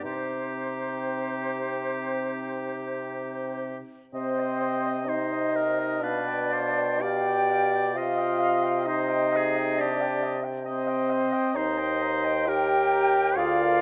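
Classical slow romantic movement for wind quintet, elegiac and solemn in a free rubato and cut from a longer piece, where an airy, vibrato-touched concert flute carries the tongued melody over a clear oboe second line with soft attacks, a distant French horn and a roomy background clarinet in accompaniment, and a warm bassoon bass with light vibrato, the five sounding together throughout in a moderate recital hall reverb as the harmony shifts at 6.0 seconds.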